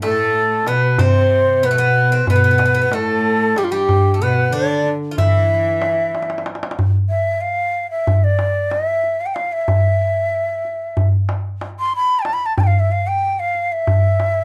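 A soulful, melancholic Turkish makam ensemble piece in 9/8, cut from a longer work, led by an up-front ney whose breathy, reedy tone carries the melody from start to finish with vibrato and tongued phrasing. Beneath it, a metallic, picked bouzouki with double strings and a biting, nasal cello section heard at a distance share a second line until 6.4 seconds, while a deep clay-shell darbuka played with soft hands keeps time throughout. A drum fill at 6.1 seconds leads into the second section, and the whole ensemble sits in a moist studio ambience.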